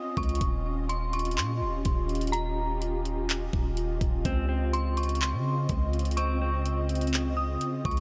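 Atmospheric cloud-rap hip hop with a blissful, dreamy half-time feel opens on an eerie, warbling FM synth bell melody, chorused, filtered and delayed, over an ethereal pad of sustained chords that pumps against the beat, before a deep sine 808 bass and an up-front trap kit of knocking kick, metallic hats and handclaps arrive at 0.2 seconds, with a dark, clean fingered electric guitar adding spring-reverbed arpeggios from 4.3 seconds as the harmony moves from Eb9 to Dbmaj9 in this short cut from a longer piece.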